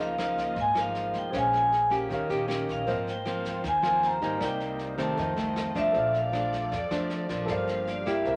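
Smooth and melancholic, this short bossa nova passage moves at 156 BPM in a straight 4/4. A vibraphone carries the melody with medium-hard mallets and its motor off, giving a metallic, ringing tone. A fingerpicked nylon-string guitar sits up front in a classical style, while a warm concert grand piano stays in the background with an intimate sound and audible action noise. Beneath them, a muted string section sustains veiled, lush chords con sordino with vibrato. A woody, thumpy pizzicato upright bass anchors the low end, and a brush kit of kick, snare and rim click joins at 0.2 s with a boomy kick. The harmony moves from Db69 through Bbm7, Eb7 and Ab69 to Cm7, F7, Bbmaj7 and Gm7, all in a wet studio ambience with a short half-second decay.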